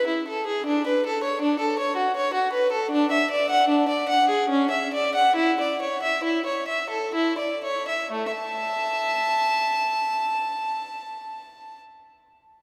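In a flexible 3/4 with a rubato feel, this short passage from a baroque-style suite movement for unaccompanied violin moves between 59 and 82 BPM, and the pulse slows from 1.8 to 8.1 seconds. A single bowed violin plays alone for the full 11.8 seconds, ranging from A3 to A5 in A major, with a flowing, radiant mood. Its period-style, gut-string tone is nasal and reedy, with an airy bow and a close, up-front presence. The harmony moves from A5 through Bm/D, a rootless E7/D, C#madd11, Esus4 and C#m/E before returning to A5 at 8.1 seconds, where a new section begins. A long, wet cathedral reverb surrounds the instrument, so the recording places the listener further back in a resonant hall, and the passage is cut from a longer piece.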